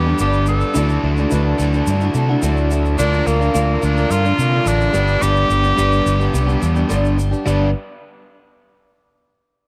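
Warm and open-road in feel, this short folk rock and heartland rock clip puts an edgy, forceful tenor saxophone up front on the melody, with light vibrato, until 6.9 seconds. Beneath it play a round, amped fingered electric bass, a boxy picked steel-string acoustic guitar and a compressed, overdriven electric guitar riff with spring reverb, over chords moving from G through Dadd9 and Bb/D back to G, while a grainy egg shaker enters at 0.2 seconds. A very quiet, woody upright piano comes in at 0.7 seconds and adds a brief fill, set within a dark studio production with light reverb.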